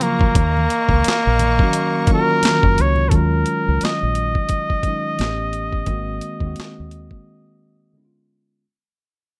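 A warm flugelhorn with light vibrato and scooped notes leads up front over a mellow tine electric piano and a gritty, pitched-down boom bap drum kit with a thumpy kick and high-tuned snare, giving this short neo-soul R&B fragment a late-night, introspective mood in a swung 4/4. A dark, round dub bass enters at 0.4 seconds, while a background string section with portamento and soft, low-tuned congas fill out the opening until 3.1 seconds. From that point the music fades out, with a break at 7.3 seconds where the drums and bass drop away, leaving the horn and piano in light reverb.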